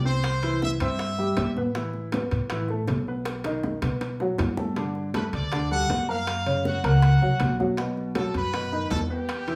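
Recorded in a small, moderately reverberant studio room, this passionate, danceable salsa excerpt moves at 159 BPM in straight 4/4, anchored by a thumpy, dark pizzicato upright bass and a woody upright piano, both up front. A brilliant, tight trumpet section with vibrato and plate reverb carries the melody for the first 1.5 seconds and returns at 5.2 seconds, while ringing, high-tuned congas and hard-hit, dry bongos sit in the background beside metal-shell timbales captured in a live room. A drum fill at 3.3 seconds falls within a chord progression that runs from C to a closing B7.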